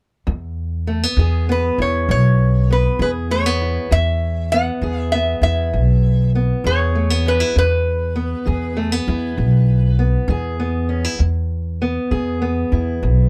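Acoustic country blues in a swaggering, laid-back 12/8, this short cut from a longer piece sets a fingerpicked parlour guitar with a dark, boxy tone over a thumpy, woody upright bass played pizzicato on gut strings, both running from 0.3 to 13.3 s. Up front, a metal-body resonator slide guitar played with fingerpicks carries the melody from 1.5 to 10.0 s in a bright, nasal, metallic voice. Close, detailed microphones and little reverb keep the sound dry.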